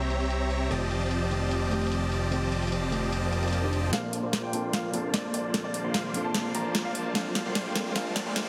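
Huge, bright supersaw chords lead this playful, lush future bass cut in a half-time feel, riding over a fat, nasal analog bass, an overdriven trap kit with a sharp snare and metallic hats, and a soft, round pluck tucked in the background, while a very quiet swell and riser enters at 3.3 seconds and a clear, boxy baby grand piano melody with dub echo arrives at 3.9 seconds as a filter sweep on the supersaws and a drum fill drive the build-up, all set in a moderate hall reverb with a heavily compressed, radio-like sound.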